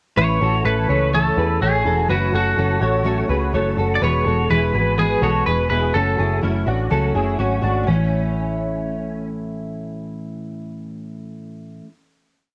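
A straight 4/4 pulse at 125 BPM drives this bright, breezy indie pop piece in A major, where a round, punchy, foam-muted dub bass and a full-bodied fingerpicked jumbo acoustic guitar with fresh strings support a clean, compressed electric guitar figure doubled in thirds under ensemble chorus, while a twangy, slightly broken-up lead guitar plays hook phrases until 6.4 s, the three guitars carrying a cassette tape tint and the home recording bathed in moderate spring reverb before settling on a final A chord from 7.9 s.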